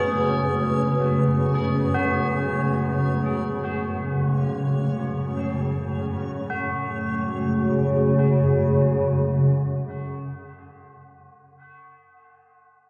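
A detuned, wave-folded swarming drone sits up front in this cavernous dark ambient drone piece, cut from a longer work, in free time and F# minor, alongside a deep, moody sawtooth analog pad with chorus holding sustained chords, solemn, metallic tubular bells playing arpeggios through dub echo until 12.9 s, and a reversed, dreamy backwards swelling texture that stops at 6.5 s, inside a wet spring reverb and an echo-heavy mix.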